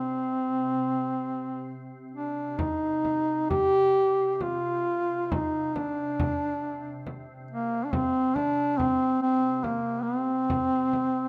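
A mellow duduk and a soft, organ-like pad begin together in this mournful Caucasian folk lament, cut from a longer piece. The duduk carries the melody up front, close-miked and played in a folk style with vibrato and scooped notes, moving between Bb3 and G4 with a longing, rubato feel in three. Beneath it the pad holds a calm, sustained drone on C3, its pure, slightly detuned tone made bright by ensemble chorus and its own reverb, with a slow attack and long release. At 2.6 seconds a deep, large acoustic frame drum enters, heard up close, and it plays until 11.1 seconds. A moderate plate reverb surrounds the rough home demo mix, which runs to 11.3 seconds.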